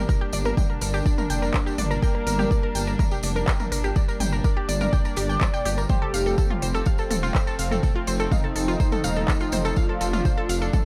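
A straight pulse from a deep, up-front electronic kick, with smooth hi-hats, handclaps and toms from a techno kit and a jingly vintage tambourine, drives this hypnotic melodic techno excerpt, where a rumbling, saturated detuned saw bass, lush ring-modulated unison pluck arpeggios trailing dub echo, a fat, mellow analog lead with vibrato, chorus and tape echo, and dark, floating sul tasto strings in the background all pump with the sidechain over a move from G minor to F at 5.9 seconds.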